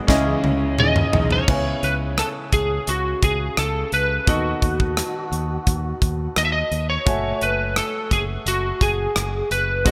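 1980s-style pop in C# minor at 86 BPM, nostalgic and moody, this excerpt opens with a drum fill on an up-front studio kit bathed in gated reverb, while a raw, lo-fi garage guitar, a shimmering pulse-width pad and dark synth brass stabs with chorus and delay appear briefly before 1.5 seconds. A clear, intimate grand piano with audible action noise and shimmer reverb carries the chords throughout, over a round, punchy fingered bass. From 0.8 seconds a slightly broken-up, compressed lead guitar with analog chorus takes the melody through a C#m7, B7/D# and F#m9 progression, all within a bright digital production and a moderate plate reverb.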